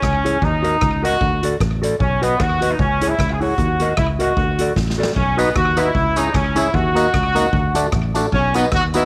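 Ska with an upbeat, joyful swing, this excerpt puts a clear, tight horn section up front carrying the melody with light vibrato, over a round, foam-muted fingered bass and a clean, mellow electric guitar providing accompaniment. A street-band drum kit with an airy, polished sound, a boomy kick and a slapback echo drives the groove and plays a fill at 4.8 seconds. At 5.4 seconds, a fat, lightly overdriven tonewheel organ adds percussive stabs while a jingly tambourine sits distant in the mix, all within a light studio reverb.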